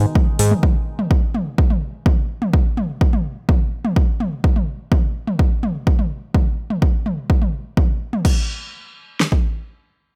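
A hypnotic, melancholic melodic techno fragment opens on a brief chord from a very quiet, morphing, vintage sine pad with chorus and a thick, detuned sawtooth analog bass pumping under sidechain, both gone within a second, before an overdriven, reverb-touched electronic deep house kit, entering at 0.2 seconds with a punchy kick, fat snare, metallic hats, crash cymbal and toms, drives a straight 4/4 until the cymbals, hats and toms stop at 8.3 seconds and the kick and snare carry on alone to 9.4 seconds.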